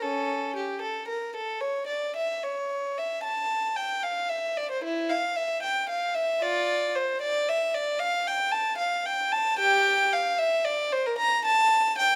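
This is a classical, baroque-style suite movement for unaccompanied violin, heard in a short passage of about 12.2 seconds cut from a longer piece. The mood is grave and introspective, and the 12/8 metre is shaped with a flexible, rubato feel. A single bowed violin carries everything from the first moment to the last, moving between C#4 and Bb5. Its period-style gut-string sound is rich and slightly reedy, placed up front and captured by close, detailed microphones. A moderate recital hall reverb surrounds the instrument, lending the playing a sense of space.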